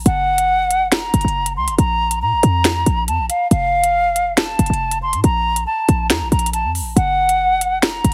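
A half-time drill groove at 139 BPM drives this ominous, dark hip hop excerpt, with an electronic kit of sharp snare, crisp hi-hats and finger snaps sitting up front beside a punchy, tight 808-style bass whose sine tone carries a noise layer and a fast attack before decaying. Over them, a close-miked concert flute plays a hollow, airy melody with vibrato and a crisp attack, moving through Gb, Bb5 and F chords. Light reverb and heavy multiband compression give the whole mix a squeezed radio character.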